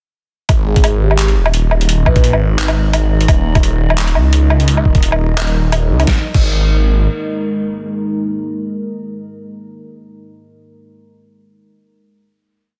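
Tense and spacious, this short half-time drum and bass piece opens its drop at 0.5 seconds with a swirling, saturated detuned saw bass up front playing long gliding notes, a thumpy, pitched-down electronic kick, and a gritty, tape-toned boom bap sampler-style kit of closed hi-hat, low woodblock, handclap, crash and a soft-clipped snare in a sparse, lightly swung beat. A mellow soft-mallet vibraphone with dub echo rings briefly in the background, while an eerie, warbling metallic FM drone holds a high note under chorus and phaser. From 4.3 seconds a deep, moody ambient pad with chorus, vintage sampler grit and sidechain pumping enters and carries a final sustained chord from 6.1 seconds, heard in light reverb through a dense, heavily limited master.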